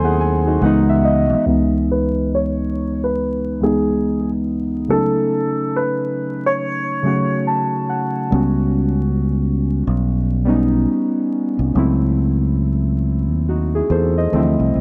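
Swung sixteenths in a steady 4/4 give this lo-fi hip hop excerpt a lazy, unhurried sway, and the mood is nostalgic and reflective. Muted, felt-like synth keys carry the accompaniment throughout, their intimate, warbling vintage tone softened by chorus and a low-pass filter, with short fills from the keys and a filter sweep running through most of the clip. A round, punchy fingered electric bass sits dark and up front at the start, drops out, then returns at 8.3 seconds to anchor the lower end. Between 1.9 and 7.4 seconds a felt-muted upright piano takes the melody in a narrow middle register, mellow and thin-felted, with its action noise audible up close. The harmony leans on jazzy, colourful chords, moving from altered dominants to a lush minor ninth and a rootless voicing, all bathed in a moderate plate reverb and a bed of vinyl crackle.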